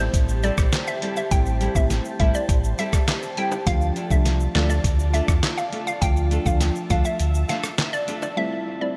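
Tough and hypnotic, this dancehall excerpt rides a straight 102 BPM groove in A minor, moving from Am7 to Dm under a dreamy wash of cathedral reverb. A muffled, pitched-down sampler drum kit with a thumpy kick, fat snare, handclaps and rim clicks sits up front beside a deep, full sine sub bass with an added octave, while a hollow, bouncy square-wave pluck carries the melody through chorus and delay. Soft, dark chord stabs and a fingerpicked nylon-string guitar playing arpeggios sit in the background, joined by a glassy, ethereal FM pad pumping against the sidechain and close, dry tube shaker and timbales, with the kick dropping out from 7.2 to 8.4 seconds.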